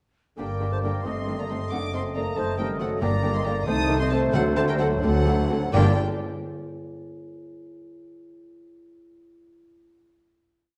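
In a rubato 6/8 at 83-94 BPM, this stormy, dramatic classical-period movement in G minor sets sul tasto violins carrying the melody over a very quiet second violin line, an airy flute doubling the tune in sixths and thirds, a sustained oboe and vintage-toned bassoon, distant French horns doubling the tune at the octave, expressive violas and cellos in the background, dark double basses with portamento doubling the bass line, and soft-mallet calf-head timpani entering at 3.0 s on single strokes, all on a dark, warm scoring stage before a final chord at 5.7 s.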